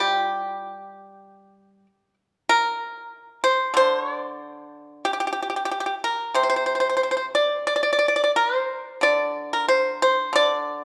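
A solo pipa opens this short passage of Chinese traditional music at once, its bright, percussive tone placed up front in an elegant, contemplative mood. Played with fingerpicks, the instrument sounds crisp and dry, ranging from C3 up to D5 in the G yu mode. The pulse sits around 92 BPM in 4/4, but the beats are uneven and the phrasing moves freely in rubato, giving the line a flexible character. A moderate recital hall reverb, lasting about 1.7 seconds, surrounds the pipa with a sense of space. The whole clip runs 10.8 seconds as a single section and is cut from a longer piece.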